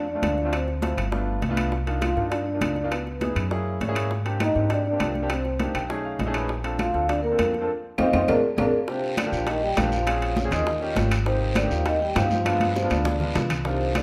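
Mellow, airy vibraphone played with soft mallets carries the melody in this lively, danceable Afro-Cuban jazz excerpt at 201 BPM in Bb major, over a breathy, distant trombone second line, a natural-sounding grand piano with deep bass that adds fills near 3.7 and 5.6 seconds, a dark, thumpy pizzicato upright bass up front, ringing high-tuned congas, round low-tuned bongos, woody claves, metal-shell timbales, and a raspy guiro that joins at 8.9 seconds, the band sitting in moderate large-studio reverb.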